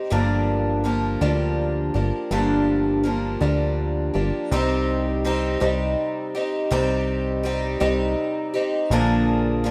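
Acoustic folk in C minor, reflective and wistful at a slow 55 BPM in a straight 6/8, this short cut from a longer piece pairs a bright, shimmering, octave-doubled picked twelve-string acoustic guitar, complete with finger squeak and a boxy parlour character, with a punchy, funky plucky analog bass whose ring-modulated sawtooth and pulse tones strike with a fast attack and then decay, both up front in light reverb as the harmony moves from Gm7 to Cm at 4.5 seconds and on to Bb7.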